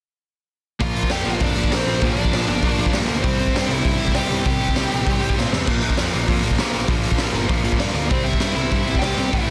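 A gritty, punchy garage drum kit with a high-tuned snare sits up front in this urgent, angry punk rock excerpt, its distant stone-room sound joined by cranked and crunchy overdriven riffing guitars and a growly overdriven picked bass in the background over Bb and C chords, while a dark, smooth overdriven lead guitar carries the melody from 0.8 seconds, drops out before a drum fill at 5.4 seconds and returns at 8.1 seconds, in a dense, heavily limited mix with little reverb.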